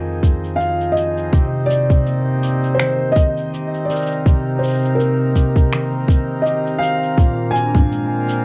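A tight, up-front electronic kick drum anchors this autumnal, wistful folktronica excerpt from 0.2 seconds, alongside a muffled, tape-warm sampler-style kit of cabasa, finger snaps and toms re-recorded in a small room. A ringing, fingerpicked concert harp plays low-pass filtered arpeggios beneath a soft, felt-muted upright piano melody carried on tape echo, while a reedy, breathing hand-pumped harmonium holds sustained chords roughened by vintage 12-bit sampler grit. The swung groove moves from Fm7 to Cm7 before turning to Bb7 at 7.2 seconds, heard in the dry, close ambience of a small 1970s-style studio.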